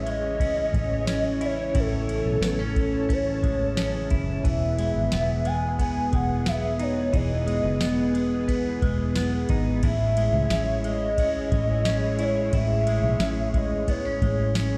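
Dream pop at 89 BPM in 4/4, ethereal and dreamy, this short section drifts over Amaj7 and Emaj7 as a hollow, woody synth lead with a clarinet-like tone carries the melody through chorus, vibrato and tape echo. Beneath it, a mellow string machine voiced as cellos holds slow-attack chords with ensemble chorus, while a bright, twangy clean electric guitar plays compressed arpeggios steeped in lush chorus and tape echo. A round, foam-muted fingered bass anchors the low end, and a dry, overdriven vintage rhythm box sits up front with deep kick, crisp snare, ride and tambourine, all set in a moderate plate and the large reverb of a bare room.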